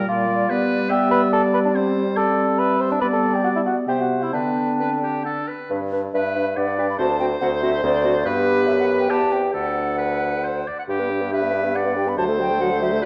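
A close, hollow silver flute carries the melody in this quick, graceful classical-period movement for wind quintet in three-four, its pure tone shaded with vibrato over a spirited, rubato feel. A distant, roomy oboe sings a second line, while a smooth-topped clarinet and a warm, distant French horn fill in the accompaniment and an up-front bassoon anchors the bass. The whole cut, taken from a longer piece, sits in a moderate concert hall reverb and is coloured by worn cassette tape with a warbly pitch drift.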